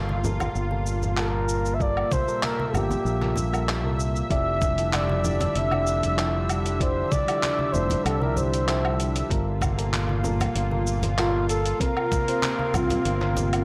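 Sunset chillout in F major at 96 BPM, smooth and relaxed, cut from a longer piece: soft, round electric-piano-like synth keys with chorus and tape echo sit beside a lush, detuned unison pad carrying chorus and vintage 12-bit sampler grit, while a punchy, up-front fingered electric bass anchors the low end over chords moving from Gm9 to Fmaj13, back to Gm9 and then to C7sus4. Dusty, tape-warm sampler-style drums with handclaps, hi-hat, shaker and woodblock join with background congas played by soft hands, and a thumpy electronic kick re-recorded in a large room enters at 1.8 seconds. A mellow, close-miked flugelhorn carries the solo melody from 1.2 seconds with tape echo, all within a dry, gritty hardware recording touched by digital ambience.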